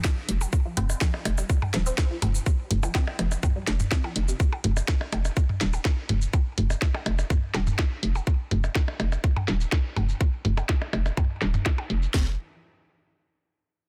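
Minimal techno in a straight four, sparse and quirky, cut from a longer piece. An overdriven garage drum kit sits up front with a tight kick, cracking snare and hi-hat. A second, quieter overdriven kit layers cabasa, hi-hat and snare, its percussion, snare and hats dulled by low-pass filters. A hollow, bouncy FM bass with a fast attack knocks between Eb1 and F1, pumping against the sidechain, and a filter sweep runs across it through the first 12.1 seconds. A juicy, squelchy sawtooth pluck with a moving notch, phaser, lush chorus and delay flickers between C3 and C4 until 4.3 seconds and returns briefly at 12.1 seconds. Tape-warm electronic blips and toms join in, all inside digital ambience and a dense, heavily limited modern master.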